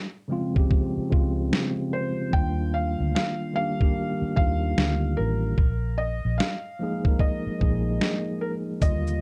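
A relaxed 74 BPM swung groove from a gritty, pitched-down boom bap drum kit with a thumpy kick anchors this mellow, cosy lo-fi hip hop excerpt, where a filtered tine electric piano enters at 0.3 s over chords of Dbmaj7, Ebmaj9 and Bb7sus4, a round, foam-muted electric bass sits up front, a soft felt-muted upright piano with audible action noise carries the melody from 1.9 s, and a deep, detuned ambient pad, barely audible, slips in at 8.8 s, all in a dark production with light reverb.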